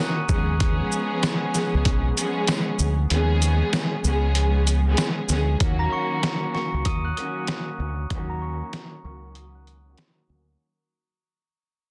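A swung 16th-note boom-bap groove in 4/4 drives this dark, gritty hip-hop excerpt: a muffled, pitched-down, sampler-style trip hop kit with a thumpy kick and overdriven crunch sits up front beside a round, punchy dub bass, while a jingly tambourine stays in the background during the first half. Intimate, bowed strings with vibrato and a sul tasto softness hold the harmony close throughout, and the kick drops out at 3.1 s. From 5.6 s the cut fades out under a filter sweep, and at 5.8 s a band-limited, bell-like glockenspiel played with hard plastic mallets carries a vintage-sounding melody over a dense, heavily limited mix with light reverb.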